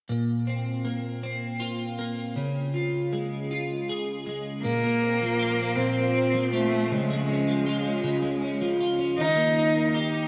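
A dreamy mix soaked in huge ambient reverb frames this romantic, heartfelt pop passage, cut from a longer piece and moving at a slow 53 BPM in a straight 6/8. A bright, twangy, double-tracked twelve-string electric guitar picks clean, compressed accompaniment from the start through Bbsus2 and Db chords. At 4.6 seconds a clear, smooth bowed cello enters with a vibrato melody carried on diffuse ambient delay, and the harmony reaches Eb near the close.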